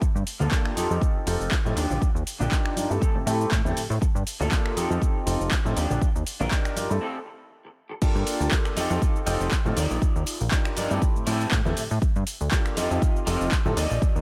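A dry mix with little reverb opens this groovy, funky slice of filtered disco house, cut from a longer piece and moving at 120 BPM in 4/4 with a light 16th-note swing. Up front, a layered, punchy electronic kick anchors the groove beside a plucky analog bass of sawtooth and square-wave tone, fast in attack and decaying, running through a low-pass filter and sidechain pumping. An overdriven analog drum machine, re-recorded in a large room, supplies crash cymbal, finger snaps, handclaps, hi-hat and shaker, while very quiet tambourine and congas ring softly under the hands. A dark, slightly broken-up picked electric guitar plays the riff through lush chorus, filtering and pumping, and a grand piano with audible action noise and long sustain adds intimate accompaniment from 0.5 seconds, treated with phaser, filtering and pumping. The chords cycle through Gm9, F9, Ebmaj9 and Am7 as a filter sweep builds over the first 8 seconds, a break arrives at 7.0 seconds, and the drop lands at 8.0 seconds.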